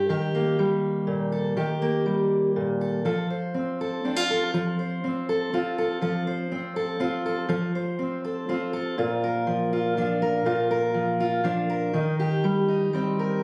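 In a straight 3/4 lilt at 121 BPM, a lone fingerpicked steel-string dreadnought guitar plays a pastoral, peaceful folk passage cut from a longer piece, its full-bodied tone spanning Bb2 to C5. After an opening on Eb, the harmony moves to F at 3.0 seconds, then to Bb and finally Eb6 by 11.9 seconds. The guitar sits up front with little reverb, in a recording made on a phone in the room.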